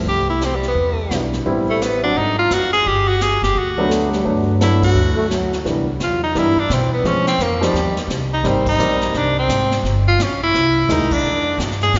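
Small-group swing and bop jazz at a brisk 172 BPM with a playful, relaxed feel, heard in an excerpt cut from a longer piece and set in G major. An edgy, forceful tenor saxophone carries the melody up front with vibrato and scooped notes, over a dark baby grand piano whose short sustain and audible action noise give the comping an intimate quality, a woody pizzicato upright bass, and a brushed jazz drum kit with a punchy kick, while a breathy, mellow trombone adds a brief second line in the background from 3.9 to 5.6 seconds. The band hits accents at 4.8, 8.6 and 11.1 seconds, and a three-second church reverb with a dulled top end bathes the group in a resonant hall sound as the harmony wanders through lush extended chords like Cmaj9, Abmaj9 and C7alt.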